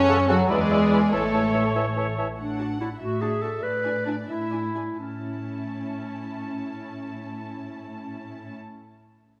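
In 6/8 at 82-99 BPM, this spirited, graceful classical-period orchestral excerpt in A major sets veiled, con sordino violins on the melody and a lush second line over muted violas and up-front cellos, while a distant French horn section briefly sustains chords; double basses, a very quiet flute, a background oboe and a dark, roomy bassoon drop out by 2.3 s, a soft-attack clarinet carries its line to the end, and the tempo slows from 1.8 to 5.0 s amid generous stage reverb.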